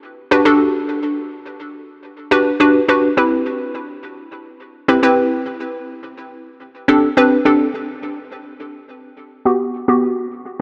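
A hollow, bouncy square-wave synth pluck opens the excerpt at 0.3 s and carries this carefree, upbeat pop piece alone, its detuned, ring-modulated tone sitting up front with chorus, a low-pass filter and tape echo. Over a drop that runs to 7.7 s, it moves through Gmaj7, Cmaj7 and D7sus4 before returning to Gmaj7. From there a filter sweep shapes the pluck until it stops at 10.4 s, all inside a lush hall reverb and a dark production.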